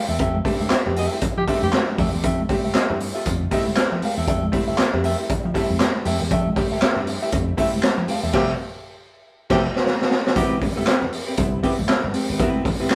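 Hypnotic and sly, this funk excerpt rides a 16th-note swing with a gritty, saturated garage drum kit up front, a punchy amped slap bass, dark clean semi-hollow guitar accompaniment bathed in spring reverb, woody, slightly detuned upright piano stabs and very quiet high-tuned congas over Fmaj9, while a breathy, whispered tenor saxophone with scooped notes slips in briefly near 1.4 seconds and returns at 8.3 seconds through a band accent and drum fill into the Am9 section at 10.4 seconds.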